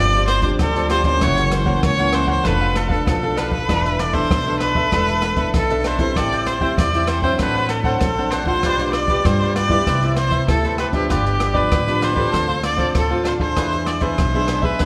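Samba and choro at 97 BPM in a yearning, bittersweet mood, where a clear, biting erhu carries the melody up front with light vibrato and portamento over crisp picked cavaquinho, fingerpicked nylon-string guitar with audible finger squeak, woody pizzicato upright bass, and a dark, smooth jazz drum kit with a boomy kick, hi-hat and rim click entering at 0.1 seconds, all set in the wet reverb of a recital hall through chords moving from G7sus4 to E7.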